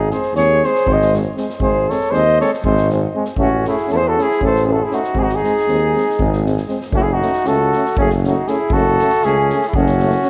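Driven by a straight 7/8 pulse at 236 BPM counted in eighths, this restless, fiery Balkan brass band piece is cut from a longer performance. A dark, distant cornet carries the melody up front, its light vibrato trailed by tape echo, while a clear flugelhorn plays a second line beneath it. A present tuba anchors the bass, and a warm euphonium and roomy trombone sit in the background, both adding light vibrato to the accompaniment. A street-band drum kit with a boomy kick and medium-tuned snare has an airy, polished, big-room sound. The harmony moves from G# to A and back to G#, then shifts to F#m as a new section begins at 6.9 seconds. The whole recording carries a worn, warbly old-cassette character with drifting pitch and a touch of reverb.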